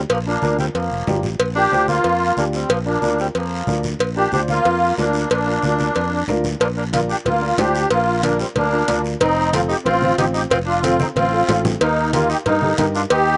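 A straight 4/4 cumbia groove at 184 BPM in Bb major drives this festive, joyful passage, cut from a longer piece, with ringing, close cowbell and timbales, a raspy guiro, and damped, low-tuned congas in the background over an amped fingered electric bass. Up front, a reedy, shimmering musette accordion carries the melody with slapback echo, while a breathy, whispered tenor saxophone plays a soft-edged second line behind it and a woody upright piano, also with slapback echo, fills in the accompaniment. The outdoor sound is dry with a dark top end, and the harmony moves from Bb to F7 at 9.2 seconds before a drum fill at 11.0 seconds leads into Eb.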